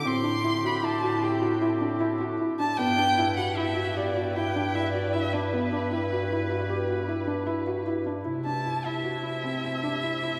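Bathed in a long cathedral reverb from a church or concert hall, this restless yet hopeful contemporary chamber piece in 7/4 sets an expressive, bowed solo violin melody with vibrato and portamento up front over clear, distant sustained woodwind chords, a mellow jazz-tinged bass clarinet line with scooped notes, and soft felt-muted upright piano arpeggios with audible action noise entering at 0.1 seconds, moving through Am7 and G6 before settling on C6 at 8.3 seconds in this cut from a longer work.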